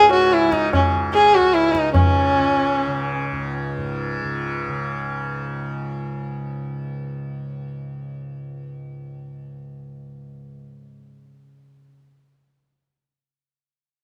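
A dark, up-front sarangi carries the melody in this short cut from a longer Hindustani classical piece, its single bowed voice moving between C#4 and G#4 with vibrato, soft attacks and expressive gliding portamento, the sympathetic strings ringing beneath it. The mood is meditative and introspective, set at 149 BPM in a straight 4/4. A softly plucked tanpura drone spans C#2 to C#3, buzzing and shimmering quietly in the background and sounding on after the sarangi stops at 3.5 seconds, until 11.8 seconds. High-tuned tabla, close and dry with a short ring, appears only briefly between 0.1 and 2.1 seconds. Light reverb gives the recording a gentle sense of space, and the music moves from an opening section into a second one at 1.9 seconds.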